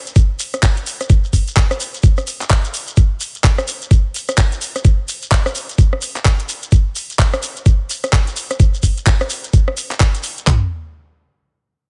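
This house groove moves at 128 BPM in 4/4, its sixteenth notes swung at 61%, with an aggressive, swaggering mood in a short cut from a longer piece. Two layered electronic garage drum kits drive it, both produced with a tape-warm, up-front character. The louder kit carries a knocking kick along with handclaps and toms. The softer kit adds metallic hats, more handclaps and rim clicks. Beneath them a shekere sits lower in the mix, grainy, mellow and acoustic, heard close and dry. The sound is tight with little reverb and a rolled-off top end, and the parts drop away around 10.5 seconds as a brief closing section runs on to 11.9 seconds.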